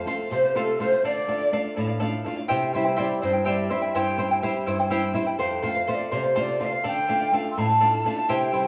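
A short excerpt of Andean folk in a steady 6/8 opens with charango and flamenco guitar fingerpicked together up front. The charango's doubled strings give a warm, shimmering edge, some of them sounding in octaves, while the guitar's lower register carries a flamenco colour complete with audible finger squeaks. At 0.3 seconds a cane quena takes the melody, its airy, hollow tone softened by rolled-off highs, with tongued notes and vibrato. A bamboo pan flute sits in the background as a second line, its soft attack and breathy chiff heard briefly at the start and again from 7.5 seconds. The harmony moves between F, D minor and C, and the mood balances festive lift with a melancholic shade. The group sounds as if playing live together in a small room, wrapped in a reverberant stone-room ambience.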